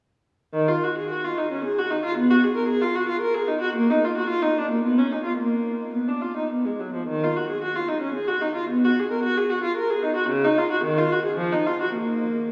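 Classical baroque-style suite movement in 3/4 with a rubato feel, introspective and grave, in which a single bowed viola plays alone from 0.5 to 12.5 seconds with a dark, woody tone and vibrato, sitting up front yet bathed in a wet cathedral reverb with a 5.0-second tail, in this excerpt cut from a longer piece.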